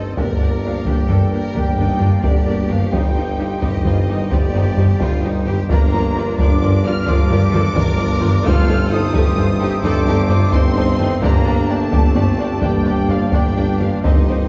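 A taiko ensemble struck with heavy sticks sits up front in this epic, dramatic orchestral film-score excerpt in 12/8, its vintage, band-limited thud carrying the most weight. High above, a lush violin section with smooth vibrato sings the melody, joined in the same register by a distant, crisp-edged flute ensemble playing a second line, while a second, very quiet violin section traces a focused line lower down. Violas fill in the accompaniment, and a faint, roomy French horn section and a tight woodwind section hold sustained chords behind them. The low end rests on a bowed double bass section and a clear, old-fashioned tuba sharing a deep bass note, with a close-miked cello section adding a bass line higher up. Very quiet, dry timpani on calf heads join from 8.5 s to 11.9 s as the harmony darkens, and the whole orchestra is heard from further back in a reverberant scoring stage with a softened top end.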